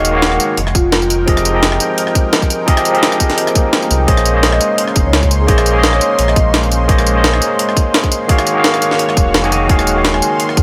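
Melancholic and dreamy, this liquid drum and bass fragment in Bb minor at 171 BPM pairs a barky, overdriven tine electric piano with delay against a lush, detuned sawtooth pad with chorus, phaser and sidechain pumping, a deep sine sub bass, a gritty, pitched-up breakbeat kit with a high-tuned snare, an overdriven electronic kick arriving at 0.7 seconds, a very quiet electronic swell at 3.5 seconds, and a mellow, ringing vibraphone with soft mallets and delay drifting in the background over Ebm11, Fm11 and Bbm11 chords.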